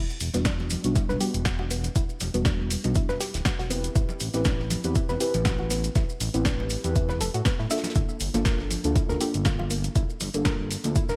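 A punchy, tape-warmed electronic kick sits up front in this deep, late-night deep house excerpt, joined by a punchy, tape-warm analog drum machine playing hi-hat and snare and a very quiet, rolled-off acoustic soul kit, while grainy maracas and ringing congas stay in the background. A saturated, smooth synth bass pumps against the kick beneath dark, detuned chord stabs and soft, round, nasal pluck arpeggios, both treated with chorus, delay and sidechain pumping, as the harmony moves from Em9 to Am9 at 4.0 seconds and Gm9 at 7.7 seconds. The mix carries light reverb, a bright 1980s-style digital sheen and a layer of vinyl crackle.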